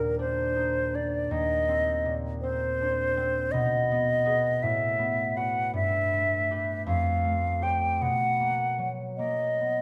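Closely and finely miked on a moderately reverberant scoring stage, this dreamy, pastoral impressionist classical duo drifts in a rubato 6/8 at 54 BPM, with a pure, hollow concert flute carrying the tongued, vibrato-tinged melody up front over a ringing, fingerpicked concert harp whose accompaniment moves through colorful chords such as Asus2, G69, Fadd9 and Bmaj7 across this 9.8-second passage cut from a longer piece.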